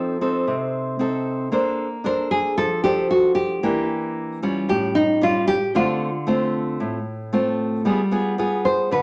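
A straight, even 4/4 pulse at 114 BPM carries this sunny, romantic bossa nova in Bb major, heard here as a nine-second fragment of a longer piece tuned to A4 = 439 Hz. Two fingerpicked nylon-string guitars sit up front in a wet studio reverb: one carries the melody between Eb4 and C5 with a full-bodied, deep classical tone, while the other supplies a bright accompaniment spanning A2 to C5. Finger squeaks surface from both guitars, lending the playing an intimate, hands-on feel. After a brief opening over F7, a nylon-string guitar solo begins at 1.5 s and runs to the end at 9.0 s. The harmony moves through lush, jazzy colours, from Bbmaj9 through Em7b5, Aaug7 and Dm7 to a closing G7b9.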